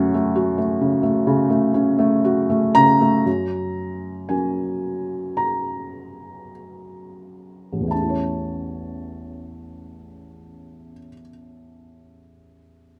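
This lyrical classical solo piano piece is tender and warm, moving in a free, rubato 4/4 at roughly 40-69 BPM and slowing down over its first 7.9 seconds. A felt-muted upright piano plays alone throughout, its soft, mellow, intimate tone heard up front through close, detailed microphones with light reverb, ranging from A1 to Bb5. The harmony moves from F#m to F# at 3.3 seconds, settling into A major, and reaches an A chord at 7.9 seconds in this short section cut from a longer piece.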